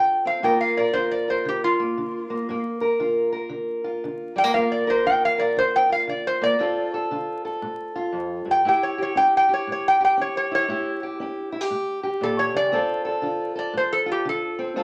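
A metallic, nasal resonator slide guitar sings the melody with a steel bar up front, soloing throughout this smoky, brooding swung acoustic country blues excerpt over a dark, boxy fingerpicked parlour steel-string guitar, with studio reverb and vinyl crackle wrapped around the pair as the chords move from Gm7 through Dm7 and A7.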